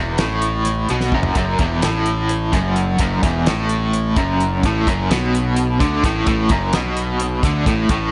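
Small-room ambience, light reverb and a faint mains hum frame this dark, trippy psychedelic rock excerpt in F# minor, moving in a straight 7/8 at 257 BPM in eighths, where an up-front, double-tracked, biting overdriven guitar with tremolo picks a low riff from E2 to D3 over a round, punchy fuzz bass and a dry, damped 70s acoustic kit with a fat snare and tight kick that enters at 0.2 s and drops a fill at 1.0 s, the harmony shifting from F#m to F#madd11 at 4.6 s.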